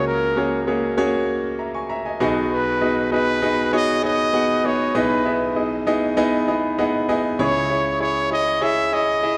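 Set in a moderate recital hall reverb, this hopeful, uplifting pop fragment at 98 BPM in F# mixolydian pairs a breathy, intimate trumpet melody, close-miked with vibrato, a soft attack and a touch of delay, with a brilliant, polished concert grand piano accompaniment of deep bass that adds a fill from 6.2 to 7.4 seconds as the chords move from F#add9/C# toward C#m.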